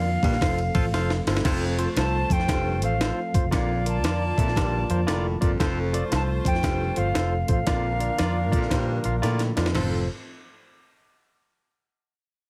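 Uptempo 1960s-style soul in F major at 116 BPM, with a swung eighth-note feel and an uplifting, joyful mood, cut from a longer piece. A silver concert flute carries the melody with a pure, tongued, expressive straight tone, set over a barky electric piano played clean through a combo amp and a very quiet tonewheel organ holding soft, flute-like chords through chorus vibrato and a rotary speaker. The groove sits up front: a gritty, pitched-up, sampler-style breakbeat kit with a thumpy kick and high-tuned snare, and a dark, round, foam-muted fingered bass that punches through its amp. A distant, roomy baritone saxophone plays a riff with vibrato and a soft attack, while a bright saxophone section adds a jazz-style second line in the background from 1.4 s. The passage opens with a band accent and drum fill, then alternates between F and Bb before a second fill at 9.2 s leads back to F at 9.8 s. 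The overall sound is heavily compressed in a radio manner, with digital ambience and a tape-warm edge on the drums.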